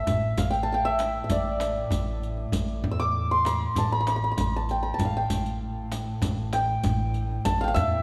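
Hypnotic and soulful, this brief cut from a longer Persian modal ensemble piece sits in dastgah shur on A, moving at 97 BPM in a straight 4/4. Up front, a mellow hammered santur carries the melody between D5 and E6, its shimmering, ringing tone filling the foreground throughout the 8.0 seconds. Beneath it, a pizzicato upright bass on gut strings plays a woody, dark, thumpy bass line, while a single bowed double bass holds a rich, expressive A2 drone in the background with soft attacks, vibrato and portamento. The tombak, deep and compressed with a saturated edge, is struck with hard hands from the back of the mix, joined by a riq whose dark jingles have a vintage, band-limited character. A moderate recital hall reverb of 1.4 seconds gives the ensemble a natural sense of space.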